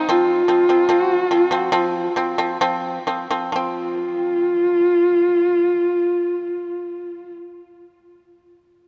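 In a straight 4/4 that slows over the first 3.5 seconds, this vast, solemn fragment of Mongolian folk music pairs a husky, bowed horsehead fiddle melody, expressive with vibrato and portamento, with percussive, fingerpicked pipa arpeggios. Both sit up front, the pipa dry, in a dark, warm production with a huge ambient reverb.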